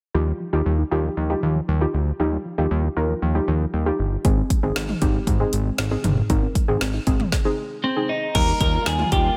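A light reverb and digital ambience give this short synth-pop excerpt an airy, polished finish, with a bright, nostalgic mood at 117 BPM in Eb major, moving from Ebadd9 to Ab and back. From the start, a warbling, lo-fi pluck with chorus carries the accompaniment, while a soft, round pluck drifts in the background with chorus and tape echo on arpeggios, and a fat, saturated analog bass sits up front with detuned sawtooth and square-wave tones and a filter sweep. At 4.2 seconds a deep house drum kit arrives with a deep kick, woody snare, dark hats, crash cymbal and toms, produced and layered close to the listener. Near the end, at 7.8 seconds, a clean, twangy twelve-string electric guitar takes the melody up front, compressed and picked. A vintage string machine of violas with ensemble chorus then adds slow-attack sustained chords in the background as the passage turns to a new section at 8.3 seconds.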